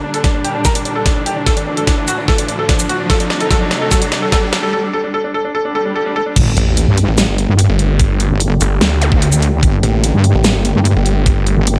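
A bright, worn grand piano melody with delay opens this aggressive, menacing half-time wobble dubstep excerpt over veiled, muted strings that pump and sit filtered in the background, while electronic risers, swells, sub drops and zaps join a tape-warm drum kit with a huge snare, bright hats and a knocking kick to build toward a break at 4.7 s, before the drop at 6.4 s unleashes an up-front, saturated wobble bass with chorus and a growling, distorted saw bass under light digital reverb.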